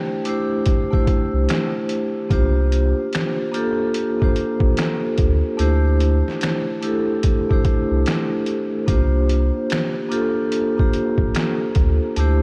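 A lazy swung sixteenth-note groove at 73 BPM underpins this dreamy, nostalgic lo-fi hip hop fragment in C mixolydian, cut from a longer piece. A ringing, metallic vibraphone with slow motor vibrato and a cassette-tape patina opens alone, sketching D9sus4 and C9sus4 chords. At 0.3 s a muffled, pitched-down, overdriven sampler-style trip hop kit joins with a thumpy kick, medium-tuned snare, hi-hat and finger snaps, and at 1.3 s a deep sine-and-triangle sub bass with an octave layer adds full, sustained low notes, all set in light digital reverb.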